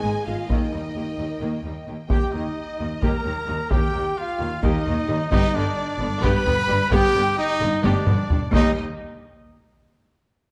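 Heavy-stick taiko drums, compressed and saturated, drive this majestic, adventurous fragment of an epic orchestral film score in 7/8 at 262 BPM in Eb major: a classical-style trumpet up front enters at 2.1 s with stabs, a close, intense viola section accompanies, clear French horns and a brief, smooth string section hold chords, bowed cello and double bass sections anchor the bass, and two lush violin sections carry the melody and a second line in the background beside a very quiet, mellow flute ensemble, with a drum fill at 7.8 s, all set in a dark production with moderate recital-hall reverb.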